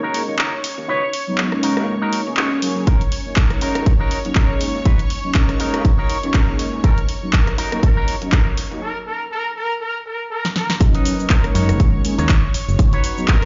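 A swung sixteenth-note groove in four drives this joyful, funky slice of filtered disco house, with a house drum kit of handclaps, hi-hat, rim click, shaker and a punchy snare, all pulsing under sidechain pumping on the hats and percussion. A punchy, up-front electronic kick joins at 2.9 seconds as the track builds through a long filter sweep, with a fingered electric bass sitting direct and in the background. Mellow synth brass supplies a round, detuned, dark accompaniment coloured by chorus, phaser and cassette tape, while a lush vintage string machine holds bright, slow-attack chords above it. A clean, twangy electric guitar with an envelope filter picks a scooped riff, and a distant, roomy trumpet section carries a jazz-style melody. After a break at 8.8 seconds and a drum fill, the drop lands at 10.8 seconds, the whole mix dulled at the top and washed in large studio reverb like a big sound system in a bare room.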